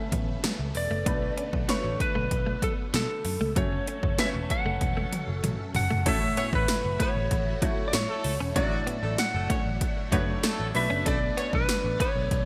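1980s-style pop at 96 BPM in A major, glossy and uplifting, where a dark, slightly broken-up lead guitar carries the melody over a natural baby grand piano with lush chorus, a swirling phased string machine holding sustained chords in the background, a compressed clean electric guitar riff treated with chorus and delay, a round, foam-muted picked bass and up-front electronic drums with a punchy kick, metallic hats and gated snare and toms, while a present horn section with light vibrato adds stabs from 6.1 s, following a drum fill at 4.8 s, in a bright digital production with moderate plate reverb.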